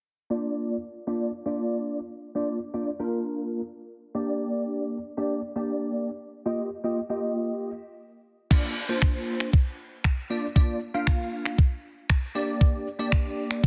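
Summery and carefree, this short dance-pop passage, cut from a longer piece, moves in a straight 4/4 feel. A bell-like tine electric piano carries the accompaniment from the opening, bright, clean and up front, with an ensemble chorus and sidechain pumping on its chords. Under a filter sweep, the opening moves through Bb, Gm and Ebadd9 before a new section arrives at 8.5 seconds. There a gated 80s digital drum machine enters with a thumpy kick, finger snaps and a crash cymbal, sampler-style and sitting up front, with soft clipping on the snare. Light reverb surrounds the parts, and the dense, heavily limited modern master has a low-pass filter on it that softens the top end.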